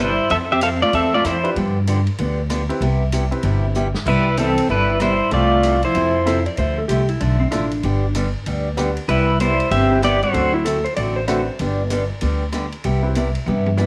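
A swung 4/4 at 191 BPM drives this cheerful, down-home western swing excerpt in C major, with a woody pizzicato upright bass up front, a boxy parlour acoustic guitar picking throughout with audible finger squeak, and a vintage drum kit with a punchy kick and rolled-off top entering at 0.3 seconds. A twangy, compressed pedal steel carries the melody in short phrases with volume swells and slapback echo, shadowed by a distant bowed cello with smooth vibrato, while a clean lap steel guitar takes second-line phrases from 6.3 seconds. An intimate upright piano with audible action noise sits in the background, and the whole small room carries light reverb over chords moving through Fmaj7, G7 and Cmaj7, with a drum fill closing at 13.5 seconds.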